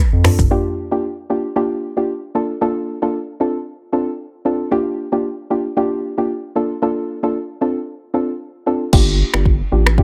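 Sultry and smooth, this afrobeats clip sways with a light swing over a cycling progression of Dm7, Gm7 and Bbmaj7 chords. A soft, round pluck enters just after the opening and carries the harmony to the end. Its dark tone blends triangle, sine and sawtooth colours with a noise layer, shaped by a filter and given shimmer by chorus and plate reverb. The saturated sub bass and the electronic afro-pop kit appear only briefly at the opening, leaving the pluck alone until both return at 8.9 seconds. The bass is deep, thick and sustained, while the up-front kit brings a deep kick, finger snaps, rim click, shaker, toms and crash cymbal, with softly clipped snare and its hi-hats muted in this closing stretch. A small room ambience and a dense, heavily limited modern master give the sound a close, polished finish.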